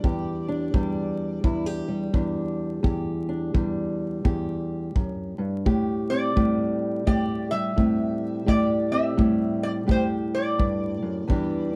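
A dark, warm production with light reverb and a dusting of vinyl crackle opens this short cut from a longer acoustic country blues piece, mournful and soulful at 85 BPM in a swung 4/4. Up front, a fingerpicked old ladder-braced acoustic guitar plays throughout, its old strings giving a woody, boxy tone as it carries the accompaniment over Em7 and then Am7 from 5.7 seconds. A metal-body resonator slide guitar, bright, metallic and nasal, played with fingerpicks and bathed in plate reverb, sings the melody in a narrow upper range, sounding briefly at the start, falling silent, then returning at 6.1 seconds. A tight, natural kick drum recorded in a studio room, with brushes, keeps time beneath the guitars until 11.5 seconds.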